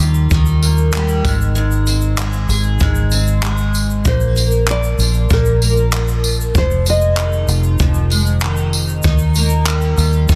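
Acoustic pop with a sunny, easy-going mood, this short cut from a longer piece moves at 96 BPM in a straight 4/4 in Eb major, tuned slightly low to A4 = 436 Hz. A double-tracked, picked twelve-string acoustic guitar carries the accompaniment throughout, its shimmering, octave-doubled tone showing a touch of finger squeak as the chords pass from Ebadd9 through Ab, Bbadd9 and Fm7 before returning to Ebadd9. Underneath, a vintage foam-muted, fingered electric bass sits up front with a dark, round, punchy sound, while a jazz brush drum kit adds a boomy kick, handclaps and tambourine in a natural small-room setting. A grainy egg shaker ticks away in the background from 0.1 seconds. At 4.1 seconds a full-bodied, fingerpicked nylon-string guitar enters with a deep classical melody coloured by tape echo, stopping at 8.7 seconds. The whole is set in a small room ambience and finished with a dense, heavily limited modern master.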